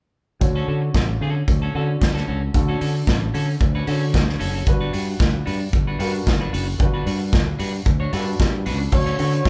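Punchy, up-front studio drums drive this danceable, glamorous disco excerpt at 113 BPM in D major, alongside a growly fingered electric bass, a twangy electric guitar at the edge of break-up and an intimate grand piano with audible action noise over a Dmaj7 to Gmaj7 progression, the band playing live in one room with moderate large studio reverb, and at 9.0 s a warm flugelhorn with vibrato and scooped notes slips in.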